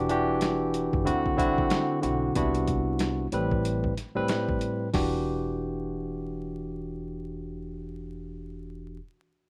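Reflective yet tough, this boom-bap hip-hop cut sits at 93 BPM in E minor with a swung 16th feel, its bright, barky tine electric piano comping up front through overdrive and cassette-tape color over lush ninth chords. A woody pizzicato upright bass anchors the low end throughout, while a gritty, pitched-down, compressed sampler-style kit with a thumpy kick and medium-tuned snare drives the groove from 0.1 until it drops out at 5.1 seconds. The dry, rough home-demo mix carries a layer of vinyl crackle, and the recording is cut from a longer piece.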